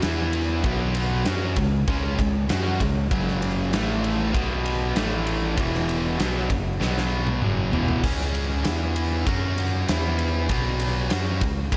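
A cranked, bright stack guitar and a sludgy distorted guitar with slapback echo open this powerful, swaggering hard rock excerpt at 98 BPM, riffing over an overdriven, punchy fingered bass and a huge, up-front arena kit with bright cymbals, a medium-tuned snare and a pumping room sound, until a drum fill from 6.8 to 8.0 seconds marks the sludgy guitar's exit, leaving the stack guitar, bass and drums to drive the power-chord riff through a lush hall to the cut at 11.8 seconds.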